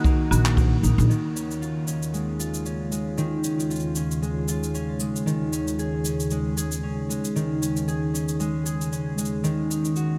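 Folktronica with an intimate, wistful mood, this short excerpt moves at 115 BPM in 4/4 with a gentle sixteenth-note swing, cut from a longer piece. A warbling, lo-fi tape-like pad built from detuned sawtooth and triangle tones holds sustained chords throughout, its slow attack, chorus and built-in reverb giving it a dark, nostalgic cast, while a filter sweep runs across it from 1.1 seconds onward. Up front, a fingerpicked concert harp rings out arpeggios through a low-pass filter and diffuse ambient delay, over a harmony that shifts from Ebm to Db/Eb, then Absus4/Eb, and back to Ebm. A boomy, roomy kick played with brushes sounds only in the opening moments, and a woody, thumpy pizzicato upright bass with a bright steel-string edge briefly sounds a low Bb before dropping out at 1.1 seconds. Distant cabasa, woodblock and handclaps, also brushed, patter softly in the background, and the whole mix is soaked in a huge ambient reverb that leaves it dreamy and suspended.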